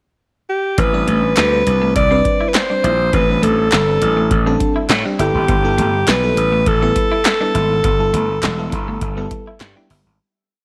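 Funky and danceable, this early-eighties boogie funk piece in A minor at 102 BPM opens with a clear, up-front alto saxophone carrying a jazz-style motif-based melody with tape echo. At 0.8 seconds it is joined by a growly overdriven slap bass playing a fat syncopated line with chromatic approach notes, a dry electro drum machine with deep kick, punchy snare layered with clap and metallic hats, and a dark background guitar picking a muted single-note line through lush chorus. Moments later a dreamy FM electric piano with soft pad layer follows, stabbing syncopated chords through chorus and phaser, and from 1.4 seconds very quiet crisp human handclaps mark the backbeat. All of them move from Am11 to G69 under light digital reverb before fading out from 7.8 seconds.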